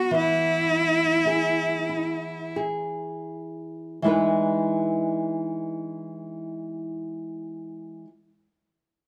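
Close, detailed microphones and a light reverb give this brief fragment of a Celtic slow air an intimate, up-front sound, wistful and pastoral in E major, tuned to A4 = 438 Hz. It moves in a rubato 3/4 at 38-55 BPM and slows through its first 4.1 seconds. A single bowed cello carries the melody with a biting, nasal tone, vibrato and an airy bow until 2.6 seconds. A small, warm nylon-string guitar is fingerpicked beneath it, finger squeaks audible, shifting from E to Emaj7 at 4.1 seconds and continuing alone until 8.1 seconds.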